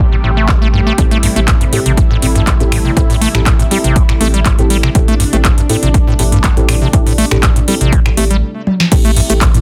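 Acid house at 121 BPM in A minor, driving and trippy, this excerpt sets a squelchy, resonant square-wave acid riff with overdrive and tape echo over a thick saturated sub bass and a sawtooth pad with chorus and sidechain pumping on a sustained Am7, joined at 0.5 seconds by a punchy, tape-warm electronic kick and a booming analog drum machine with tonal snare, metallic hats, handclaps, finger snaps, cabasa, toms and crash, while a dark, warbling vintage chord stab with tape echo enters at 1.0 seconds, before a stop at 8.4 seconds and a drum fill at 8.7 seconds in a dry, dense, heavily limited mix.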